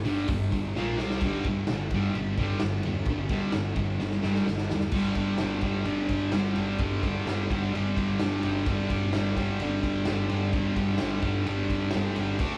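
Garage rock with a rowdy, swaggering mood, this short cut from a longer piece drives along at 129 BPM in a straight 4/4. A thick, double-tracked fuzz guitar sits up front with a bright, distorted riff spanning G2 to D4, moving through power chords on G, B-flat and C before returning to G at 1.2 seconds. Beneath it, an overdriven picked electric bass adds an amped, warm low end from E1 to D2. The raw acoustic drum kit, heard in a stone room with a rolled-off top, pairs a punchy kick and medium-tuned snare with hi-hat, ride and crash, and drops in fills at 0.8 and 4.0 seconds. Light reverb frames the band as if playing live together in one room, with the guitar clearly dominant over the drums and the bass.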